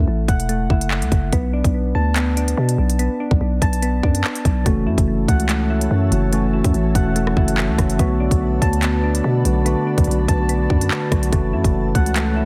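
Soft, chorused electric-piano-like synth keys arpeggiate over a growling 808-style bass and an up-front drill kit with a hard-clipped kick, crisp hats, claps and rim clicks in this tense, ominous half-time drill excerpt at 144 BPM in F# minor, moving between F#m7 and Bm7, as a mellow tine electric piano joins at 4.6 seconds and a glassy, ethereal FM pad adds sustained chords from 5.2 seconds in a dense, heavily limited digital ambience.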